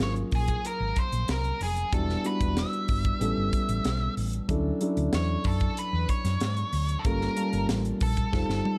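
A straight 4/4 groove drives this short, slick slice of polished 1980s jazz-funk pop, its bittersweet mood carried by a crisp fusion kit with a high-tuned snare and tight kick, a round, punchy hollow-body bass, and a mellow, vintage concert grand piano touched with subtle chorus that moves through Gbmaj7, Em7, A9, Dmaj7 and Gm7b5. Over them a picked octave-fuzz lead guitar sings the melody with distortion. The production is dark, with light reverb, and a drum fill closes the passage at 8.3 seconds.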